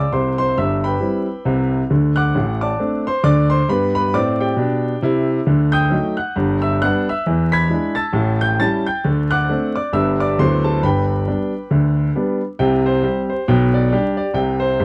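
A clear, natural grand piano sits up front and plays solo stride jazz with a swinging, exuberant feel, ranging from deep bass notes to bright high ones and moving through chords from Cmaj7 and D7 to E7 and A7 before shifting into a new section at 12.6 seconds, all captured in a dry, close 1970s-style studio sound with light reverb and vinyl crackle in this short cut from a longer piece.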